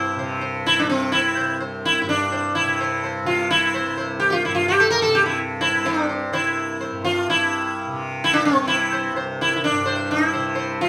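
A straight four-beat pulse carries this serene, radiant Hindustani classical passage, cut from a longer piece, where a round, bright, plectrum-plucked sitar with buzzing tone and sympathetic strings sits up front on the melody above a softly plucked, shimmering tanpura drone lower in the mix, the two playing live together in one room with wet studio reverb as the music moves into a new section at 7.3 seconds.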